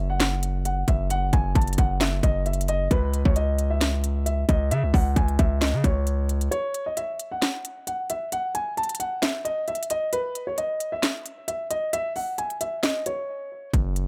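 A mellow, boxy grand piano with audible action noise and a low-pass filter carries the melody over a heavy, saturated 808-style bass as this dark, melancholic half-time trap excerpt in C# minor opens at 133 BPM. An electronic kit of hard-clipped kick, sharp snare, crisp hi-hats and handclaps enters at 0.2 s, and the bass drops out at 6.5 s for a break where piano and drums continue in digital ambience, returning at 13.7 s as the piano stops.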